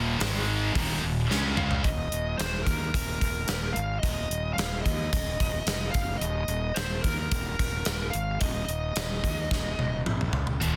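A dense, heavily limited modern master with little reverb carries this anthemic, powerful hard rock passage, where double-tracked heavy high-gain, scooped and sludgy guitars play a background riff until 1.8 seconds, with the scooped and sludgy pair briefly returning at 10.6 seconds, while a growly, punchy fuzz fingered electric bass and a gated 80s drum kit with a tight kick, medium-tuned snare and fills sit up front, and a dark, bluesy overdriven lead guitar carries the melody from 1.6 seconds.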